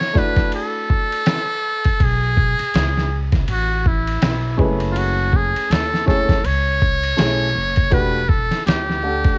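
A breathy, buzzy trumpet with a metal mute carries the melody up front over a thumpy, compressed sampler-style drum kit of kick, fat snare, hi-hat and ride, with a dark, vintage upright piano comping softly underneath. At 2.0 seconds a woody pizzicato upright bass joins with a touch of tube saturation, settling this mellow, smoky jazz-hop cut into its swung groove as the chords move from Bm11 through F#m11 to Em11. Cassette tape grit, vinyl crackle and a small-room reverb give the whole piece a homespun lo-fi haze.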